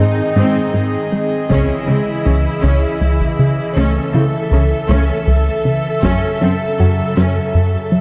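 A cinematic, hybrid orchestral and electronic film score in a straight 6/8, this short cut from a longer piece feels vast and brooding, moving through G#, C#madd9, A/C# and F#m chords. Up front, an airy, breathy pad with chorus holds slow-blooming sustained chords, while a punchy, wave-folded analog bass drives a riff with a fast, decaying pluck. A lush viola section bowed with vibrato supplies intense accompaniment, and a smooth, even cello section sits further back on the low line until 7.2 seconds. In the background, a glassy, crystalline wavetable pluck traces arpeggios through chorus and delay, its tone shifted by a filter sweep. A taiko ensemble struck with heavy sticks enters at 1.5 seconds, and a moderate scoring-stage reverb gives the whole blend a sense of space.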